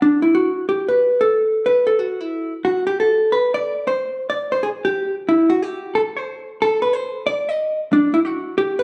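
A lush, roomy reverb surrounds this short jazz fragment, captured as a live performance in a large studio space. At its center sits a vintage hollow-body electric jazz guitar, playing solo and placed up front from 0.0 to 8.8 s. Its clean, picked tone is dark and compressed, with the rounded body resonance typical of a hollow-body instrument. The line moves within a compact middle register, from D4 to Eb5, over a lilting swung feel in four. The mood is relaxed and playful, like a brief glimpse taken from a longer tune.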